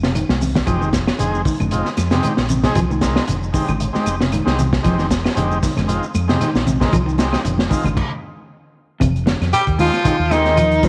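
Afrobeat at 115 BPM in F dorian, intense and funky, with a swung sixteenth feel built on a crunchy, saturated breakbeat kit with a punchy kick and high-tuned snare, a round, dark fingered bass, and a bed of grainy shekere, bright high-tuned congas and woody claves. A slightly broken-up electric guitar plays dark arpeggios with slapback echo in the background while a buzzy combo organ with heavy vibrato comps over an Fm7 chord, all in a moderate echo-chamber reverb, and the groove stops from 8.0 to 9.0 s. At 9.5 s a clear, up-front tenor saxophone takes the melody with slapback echo, backed by a raspy, breathy baritone saxophone and a veiled trombone with bucket mute on a second line.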